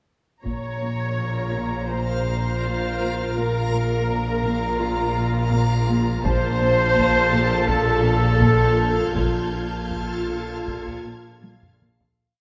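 Cinematic suspense film score with an eerie, ominous mood: a muted studio violin section carries a veiled tremolo melody above muted symphonic violins and a distant, roomy dark clarinet on second lines, with muted violas accompanying in the background, while symphonic cellos pulse an ostinato over sustained studio cellos and lush double basses; just after a second, a reversed, granular swelling texture and a tense sawtooth drone join, taiko drums play a heavy ostinato in the background, high dissonant violin clusters appear at 6.2 s, and the piece fades from 9.2 s into a closing drum fill within a moderate scoring-stage reverb.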